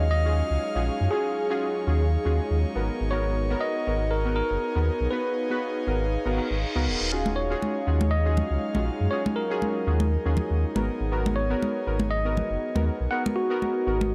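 Hypnotic and smooth, this lightly swung deep house excerpt sets a bell-like tine electric piano melody, gritty with vintage 12-bit sampler crunch and analog delay, over round, detuned analog key stabs, a nostalgic, warbling tape-like pad with phaser in the background, a breathy, airy pad and a deep sine sub bass up front, while an electronic reverse cymbal sounds at 6.3 s and close, dry hard-hand congas enter at 7.3 s, all within a cassette-tinged, lightly reverberant recording as the harmony moves from Ebm11 to Abm9 at 10.9 s.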